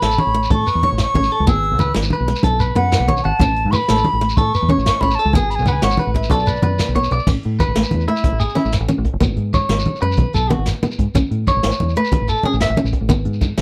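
Highlife guitar band music in a straight 12/8, this danceable excerpt opens with an airy wooden flute carrying a tongued, vibrato-laden melody over twangy, compressed electric guitar arpeggios with slapback echo and a round, foam-muted fingered bass up front, joined at 0.3 seconds by fresh-stringed fingerpicked flamenco guitar. A distant brushed drum kit with dark cymbals and a boomy kick, soft-handed low-tuned congas in the background, and a grainy shekere fill out the groove. The flute bows out at 7.0 seconds; after a drum fill, the electric guitar takes a solo from 7.3 seconds until it stops at 12.8, all in a dry sound.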